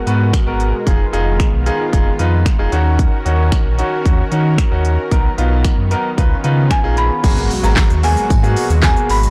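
Airy, detuned supersaw chords open this bittersweet yet confident dance-pop fragment at 113 BPM, joined at once by a clear, intimate grand piano, a deep sine sub bass with transformer saturation, all three pumping under sidechain, and a punchy, up-front pop kit with a fat, softly clipped snare, crisp hats, snaps, claps and shaker, before a dark marimba melody with slapback echo enters at 6.7 seconds and a very quiet jingly tambourine and electronic impact arrive at 7.2 seconds, all in a blown-out, overdriven recording touched by light reverb.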